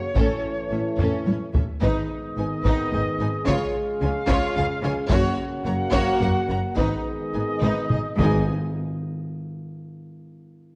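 A driving 3/4 pulse at 108 BPM comes from a close, dry taiko ensemble struck with heavy sticks, with fills around 1.0 and 7.6 seconds, beneath a relentless, heroic cinematic orchestral cue that moves through A, G#m, C# and F#. Lush bowed strings carry it: the violin section sings the melody with vibrato and a smooth top over a background second violin line, a clear viola accompaniment, and a rich, even bass from cellos and double basses. Mellow French horns and dark, distant trombones hold sustained chords while a roomy solo trumpet adds clear stabs, and articulate up-front timpani with hard mallets enter only at 8.2 seconds, all set in a moderate scoring-stage reverb.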